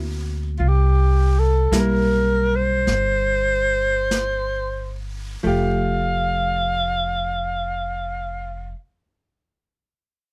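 A tender, intimate jazz ballad in F major, cut from a longer piece, moving at a slow 44-56 BPM with a gentle swing and easing back over its first 5.4 seconds. A breathy, mellow alto saxophone with subtone and vibrato carries the melody up front, over dark, clean picked chords from a vintage hollow-body electric guitar and a woody, thumpy pizzicato upright bass on gut strings, while a soft brushed drum kit with snare and hi-hat plays from 0.6 to 6.1 seconds. The sound is close and detailed with little reverb, as the harmony passes from D7b13 through C7 to settle on Fadd9 at 5.4 seconds.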